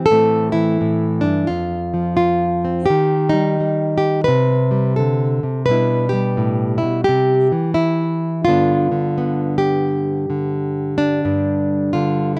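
Swung eighth notes in an unhurried 4/4 carry this warm, nostalgic folk piece, played by a single fingerpicked nylon-string guitar with a dark, classical tone and audible finger squeak, sitting up front in a dry outdoor recording. The harmony moves from Am through F5, Eb and Csus2 to C and G before a brief new section settles on G5 at 11.2 seconds, and the passage is cut from a longer performance.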